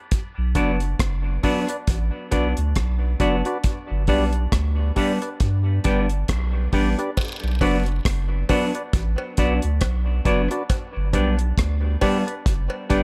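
Heavy and hypnotic, this dub reggae excerpt swings over a two-chord cycle, anchored by a dry, up-front acoustic drum kit with a tight kick, dark cymbals, hi-hat and rim clicks, and a round, deep sine sub bass. A hollow, percussive organ stab with chorus and a clean, picked semi-hollow electric guitar both carry dub echo within a light studio reverb. At 7.2 seconds a quieter, close cowbell and jawbone-type rattle joins, also sent through dub echo.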